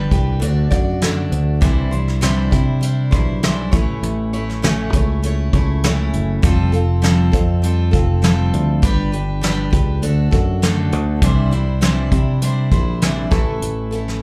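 Hopeful and open-road in feel, this short folk rock and heartland rock cut moves at a steady 100 BPM in a straight 4/4, cycling through D, Cadd9, A, Fadd9 and G. A bright, full-bodied picked steel-string acoustic guitar with fresh strings and a touch of slapback echo carries the chords, while a growly, punchy fingered electric bass and a soft brush kit with a fat snare and punchy kick sit up front beneath it. The sound is that of a live club gig heard through the venue's PA, with a natural, close feel and only a little room reverb.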